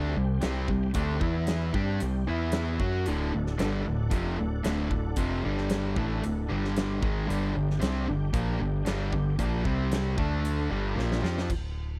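A dry, close 1970s-style studio sound frames this short, confident classic rock clip cut from a longer piece, with a driving straight feel in 4/4. Two overdriven electric guitars play the riff from the start, one bright and up front, the other sludgy and warmer, over chord movement around C, E, F#, D and G. Beneath them a dark, round picked electric bass sits up front and carries on until 12.0 seconds, just past the rest of the band. A big acoustic rock kit enters at 0.4 seconds with a punchy kick, a fat snare, hi-hat and crash, its bright stone-room tone giving it weight, and it closes with a fill from 11.0 to 11.5 seconds. In the background, a full tonewheel organ holds sustained chords through a slow rotary speaker with light overdrive and chorus vibrato.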